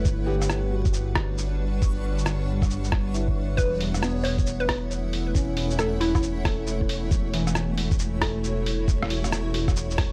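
A ghostly, melancholic future garage excerpt rides a swung 4/4 groove, with a muffled, thumpy electronic kick and a pitched-down, tape-warm sampler kit of hi-hat, rim click and shaker entering at 0.1 seconds. Underneath, a dark detuned saw bass rumbles deep and up front, its beating unison tone thickened by tube saturation and sidechain pumping. A felt-muted upright piano plays soft, intimate accompaniment with audible action noise, roughened by vintage 12-bit sampler grit and tape echo, while a cloudy granular pad holds blurred, evolving chords through Gmaj7, Esus24 and A6/E. A faint reversed texture hangs bright and dreamy in the background, and from 3.6 to 6.2 seconds a hollow, bouncy square-wave pluck carries a short melody through chorus and tape echo. The mix is dry and gritty, with vinyl crackle running beneath this fragment of a longer piece.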